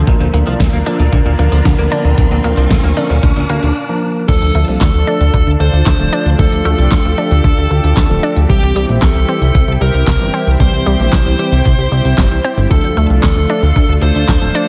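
A dense, heavily limited modern mix with light digital ambience frames this driving, moody synthwave cut in D minor at 114 BPM, where a glossy, detuned chorused synth bass sits up front under a knocking, tape-tinged electronic kick and a pop kit of fat snare, crisp hats, handclaps and crash, while a lush, warbling unison pad with sidechain pumping holds sustained chords as a nasal, gritty analog pluck arpeggio and mellow tine electric piano stabs fill the background; an electronic riser and a twangy, compressed clean electric guitar riff open the piece until a brief break at 3.8 seconds, after which a dark, overdriven lead guitar carries the melody from 4.3 seconds over the Dm, C, Dm changes.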